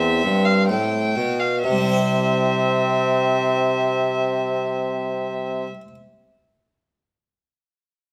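Classical, baroque-style sonata movement with continuo in C major, cut from a longer piece, moving at 63 BPM in straight 4/4 with a flowing, radiant mood, tuned to A4 = 435 Hz. A mellow solo trumpet carries the melody on C4 with light vibrato in a classical style, while a dark violin adds a second line between E5 and G5. Bowed by one player, its gut-string tone sounds nasal and reedy in a period manner, at once distant and up front. A plucked French-style harpsichord with three sets of strings fills out the accompaniment from E2 to C5 with a full, brilliant tone. Beneath them a solo bassoon, mellow and roomy with light vibrato, holds the bass between E2 and C3 and sits loudest in the ensemble. The opening passage slows down through its first 1.6 seconds on a C chord before a second section carries on to about 5.4 seconds, all set in a moderate stone room with a 1.1-second reverb.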